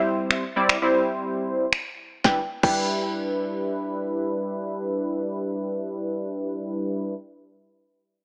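A summery, euphoric dance-pop fragment in G major and free time opens with a woody, round mallet-like synth pluck carrying a short melody between E5 and G5, colored by chorus, a low-pass filter and digital delay. Beside it from the first moment sits an up-front funky polysynth comp of detuned, warbling sawtooth chords with sidechain pumping, moving from C to G6 at 2.2 seconds. A deep house drum kit with a deep kick, punchy overdriven snare, finger snaps and crash cymbal joins at 0.3 seconds and drops out at 2.8 seconds, all heard through light reverb and digital ambience with a small-speaker character.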